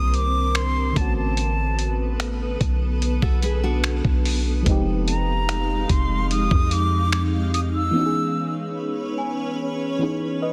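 Contemporary R&B at a sensual, moody 73 BPM in 4/4, where a breathy concert flute with vibrato carries the melody through digital delay over a round, dark FM electric piano with chorus and phaser, a cloudy, evolving granular pad, a deep, boomy 808-style bass and a gritty, compressed sampler-style kit of finger snaps, hi-hat and thumpy kick, while a fingerpicked nylon-string guitar adds bright arpeggios around 3.2 s and a slightly out-of-tune, bell-like celesta glints at the start and returns at 9.2 s in the break that begins at 7.9 s, all under a dense, heavily limited modern master.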